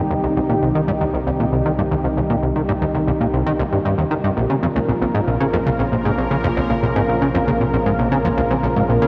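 A sweeping, resonant pad opens this brief, expansive cut from a longer piece of sequencer-driven space music, holding sustained chords up front with a bright, airy, detuned sawtooth character and chorus, while a warm analog drone sits low in the background, its pulse-width tone thickened by chorus and tube saturation. From 0.1 seconds a punchy, funky analog bass riff enters prominently, its fast-attack filter pluck and ring-modulated edge echoed by delay. The music moves at 116 BPM in a straight 4/4 in C phrygian, shifting from C minor to B-flat minor at 4.4 seconds. At that same moment a soft, round pluck joins in the background with mellow arpeggios, dressed in chorus and delay. The whole recording floats in a huge, wet reverb with a long tail and carries the worn, warbling pitch drift of old cassette tape, giving the cosmic mood a hazy, aged sheen.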